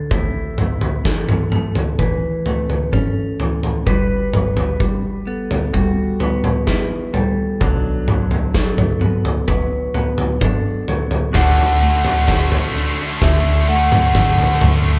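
Post-rock with a hopeful, cinematic mood, this excerpt layers clean picked arpeggios on a warm semi-hollow electric guitar with ringing vibraphone arpeggios, while a twangy pedal steel sustains compressed chords in the background over a mellow, digital FM bass and a punchy, up-front rock drum kit, until a bright, tight distorted guitar riff enters at 11.3 s and a drum fill builds from 11.4 s, the whole band sounding live in one large reverberant studio room.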